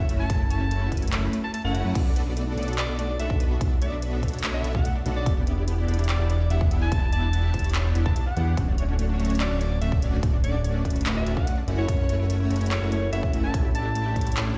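A half-time 4/4 groove drives this emotional, lush future bass excerpt, where a clear, jazz-style alto saxophone solo with dub echo and sidechain pumping floats over a smooth supersaw riff with ensemble chorus, very quiet warbling pluck arpeggios, a fat, detuned analog bass up front, crisp trap hats, claps and crashes, and a punchy layered kick that drops out from 1.1 to 2.0 seconds, all moving through F#m7, Bm7, Em7, Dmaj7, back to F#m7 and on to A7sus4, heard in a bare room with large studio reverb.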